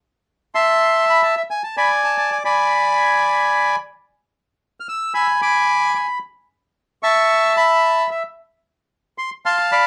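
The rhythm is rubato over a 4/4 metre, with time stretching freely in this elegant, passionate tango fragment cut from a longer piece. A solo bandoneon enters at 0.5 s and carries the whole passage alone, singing in a high register with a reedy, airy tone placed up front. The harmony passes from a suspended opening through a darker diminished colour before settling on a minor chord near the close at 8.4 s. A moderate club reverb gives the instrument a modest sense of room around it. The result is intimate and expressive, like a brief, heartfelt statement drawn from a larger performance.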